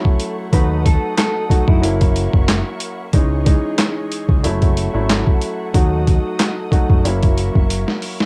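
Tough and moody, this short boom-bap hip-hop excerpt at 92 BPM sets a gritty, overdriven, up-front sampler drum kit with thumpy kick, high-tuned snare, hi-hat and handclaps against a dark, long-sustaining baby grand piano, lush bowed strings in the background, a round dub bass entering at 0.5 seconds, and a clean, fingered electric guitar melody with spring reverb and tape echo that sounds only from 0.5 to 2.0 seconds, all moving over F#m7, D#dim, F#7 and C#madd9 with a cassette haze on the piano, strings and guitar before a drum fill at 7.7 seconds.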